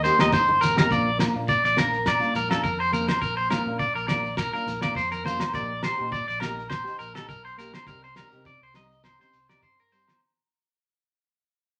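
Set in a wet studio reverb, this sunny, carefree highlife guitar band excerpt features a drum fill at 0.2 seconds from a cloth-damped, muffled kit with a fat snare and tight kick, then begins fading out at 0.9 seconds as the chords move from Eb through Bb to Cm. Up front, a bright, twangy electric guitar at the edge of break-up picks arpeggios over a dark, full-bodied fingerpicked nylon-string guitar and a round, amped fingered electric bass. In the background sit ringing agogo bells, a grainy shekere and soft-handed, medium-tuned congas, which drop out at 5.5 seconds.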